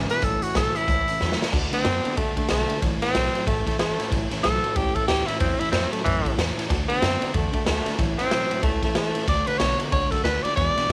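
A brisk, swung 4/4 feel drives this rowdy, rollicking rockabilly clip, cut from a longer piece. The raw garage drum kit sits up front with a punchy kick, a medium-tuned snare and dark cymbals, and a short drum fill at 1.2 seconds kicks the tune into its second section at 1.5 seconds. Underneath, the pizzicato upright bass thumps woodily in the background, while a twangy, compressed clean electric guitar picks out a low riff over chords moving between A and D. A raspy tenor saxophone carries the melody from 0.1 seconds, gritty yet smooth on top, with scooped notes and a light vibrato. Tucked far back, a full-bodied picked steel-string acoustic guitar with the odd finger squeak and a polished upright piano with long sustain fill out the accompaniment, all under light reverb and studio ambience.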